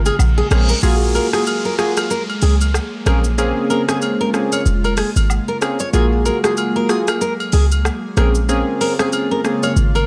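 Afrobeats at 94 BPM with a swung sixteenth-note feel, this hypnotic, sultry groove moves between Bbm9 and Gbmaj9/Bb over a punchy, tight 808-style bass up front, a fingerpicked, full-bodied nylon-string guitar riff with delay, round, warbling analog keys with chorus, an electronic afro-pop drum kit with metallic hats, rim click and shaker, close, dry agogo bells and woodblock, and a glassy, ethereal FM pad, while an electronic reverse cymbal and downlifter sound from 0.3 to 5.9 seconds in a fairly dry mix.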